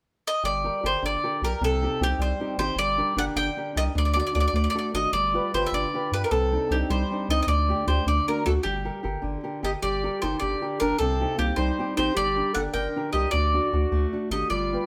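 Romantic and passionate, this Italian folk serenade sways in 6/8 at 102 BPM in G harmonic minor, with a picked bowl-back mandolin singing the melody up front on its warm double strings over a small, fingerpicked nylon-string guitar and a deep, dark, round bass. At 9.6 seconds a punchy clarinet in classical style joins with a warm second line as the opening passage returns, moving through minor chords that lean on D. The band plays live together in a stone room with moderate reverb, and the clip is cut from a longer piece.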